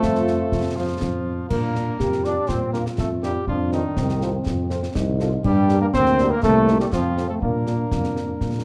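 A proud, spirited wind-band march in Bb major at 122 BPM in 2/4 opens at once with a present cornet carrying the melody over a euphonium second line, trombone sustained chords and a soft-attacked tuba bass, while the French horn section supplies background accompaniment until 8.2 s. The brass play in a classical style, with light vibrato from the cornet, euphonium, horns and trombones, and concert snare drum, bass drum and clash cymbals sound close and dry with dark cymbals. A moderate large-studio reverb and a dark, warm production round out this 8.6-second passage cut from a longer piece.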